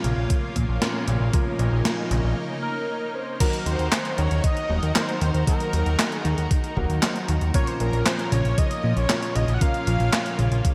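A straight 4/4 synthwave pulse at 116 BPM in Eb dorian drives this moody, cinematic excerpt, where a thumpy, tape-warm electronic kick sits up front beside a gated 80s drum machine of crash, handclaps, hi-hat and gated-reverb snare, while a fat, detuned analog bass pumps against the beat under lush chorused pad chords, a very quiet round analog pluck arpeggio and clear, intimate grand piano stabs with delay; after a short break at 2.4 seconds, a bold sawtooth unison lead carries the melody with cassette-tape colour from 2.6 seconds, joined at 3.4 seconds by a shimmering string-machine violin line in the background as the chords move from Bbm to Ebm and back, all within a bright 1980s-style digital production and plate reverb.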